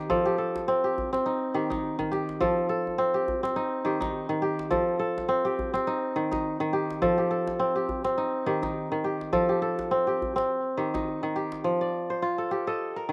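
A mellow, ringing kora sits up front, its fingerpicked arpeggios spanning Eb3 to Eb5 with a slapback echo. This is flowing, hypnotic West African string music at 104 BPM in 4/4 and F mixolydian, with a light swing on the sixteenths. The harmony alternates steadily between F and Eb, and that two-chord cycle gives the passage its trance-like pull. A medium-tuned acoustic djembe plays percussion much lower in the mix, also with slapback echo, and adds a short fill around 2.0 seconds. The djembe drops out at 11.6 seconds, leaving the crisp kora alone over a brief closing section until 13.1 seconds. Recorded outdoors with little reverb, the sound is close and dry, and the clip is cut from a longer piece.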